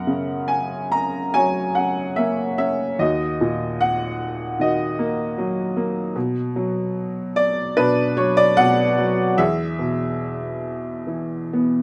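A small room's moderate reverb, about 0.5 seconds long, surrounds an upright piano placed up front, its tone woody and a touch worn, slightly detuned and boxy, with long sustain. This calm, tender classical fragment is cut from a longer piece and runs just under 12 seconds, the solo piano playing throughout in a lyrical vein. Set in F# mixolydian and 4/4, it moves with a rubato feel at a tempo that drifts between 63 and 79 BPM. The harmony travels from F# through D#m and Bm before settling on E. The piano's range spans from D#2 up to A#5, giving the single instrument a full, singing presence in an intimate space.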